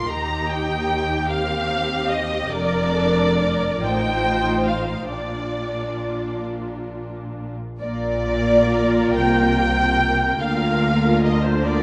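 Muted violins carry a tender, lyrical melody over a second violin line, veiled violas, dark cellos and soft-edged double basses in this slow, rubato string-orchestra excerpt in Bb major and 6/8 at 43-51 BPM, all bowed con sordino with vibrato in a moderate concert-hall reverb, shifting from its opening section into a new one at 7.8 seconds.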